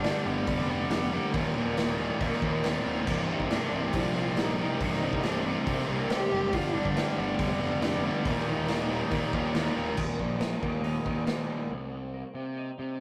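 A rough rehearsal-room recording with tube saturation and a moderate booth ambience catches a cathartic, angsty quiet-loud alternative rock fragment in C minor at 139 BPM, where an up-front cranked overdriven guitar and a scooped high-gain guitar grind out riffs over growly fuzz bass and a gritty, punchy garage drum kit, while a distant bowed cello sings a vibrato melody, a very quiet warbling string machine enters at 3.1 seconds with dark sustained chords, and a faint twangy twelve-string electric guitar arpeggiates from 10.0 seconds.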